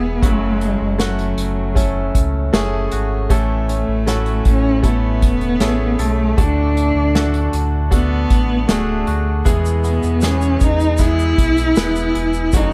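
A hopeful, heartfelt pop ballad with dark small-room production: an expressive bowed cello carries the melody with vibrato and portamento over brilliant concert grand piano accompaniment, a twangy clean electric guitar picks arpeggios with spring reverb in the background, a deep sine sub bass sits up front, an acoustic drum kit with a punchy kick, played with bundle sticks, enters at 0.2 s, and a grainy tube shaker joins at 9.5 s.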